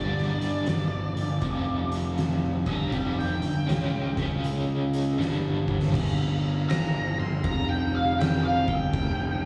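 Blues rock power trio with a southern rock streak, brooding and smoky in a swung groove: in this cut from a longer piece, a double-tracked, biting overdriven guitar riff with tremolo and slapback echo runs until 5.9 seconds over a growly, fuzz-laden picked bass and an oversized low-tuned drum kit with fat snare and punchy kick in a pumping stone room, while a dark octave-fuzz lead guitar with wah, delay and slapback echo carries the melody and moves into a solo at 5.9 seconds after a drum fill, captured as a live gig through the venue's PA with recital hall reverb.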